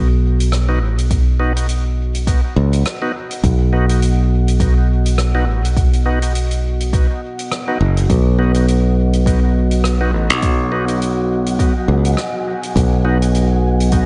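A growly, up-front fingered electric bass anchors this peaceful, hazy ambient dub excerpt in B major at 103 BPM, with a loose 16th-note swing, while a deep, warbling dark pad with chorus fades in underneath on sustained chords. Soft-mallet hi-hat and rim click with a natural hall tone come in first, then reedy, lightly overdriven tonewheel organ stabs arrive through a slow rotary speaker and dub echo, followed by a tape-flavoured electronic kick from 1.1 seconds. At 9.6 seconds an airy, breathy wind-like noise texture drifts in behind everything, all set in a small room with light reverb and a dull top end.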